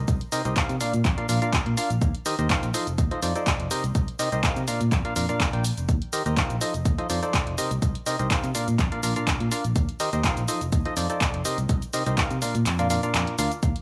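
Euphoric and feel-good, this piano house excerpt moves at 124 BPM in Bb major with a light 16th-note swing, cycling through Cm7, Bb, Eb6 and F7. A hollow, percussive organ stab with a mellow chorus sheen and digital delay sits up front beside a round fingered electric bass, and both pump against the beat. A punchy, tape-warm analog kick anchors the groove alongside drum-machine handclaps, hi-hat and shaker, all set in light reverb, though the kick briefly drops out from 12.7 to 13.6 seconds.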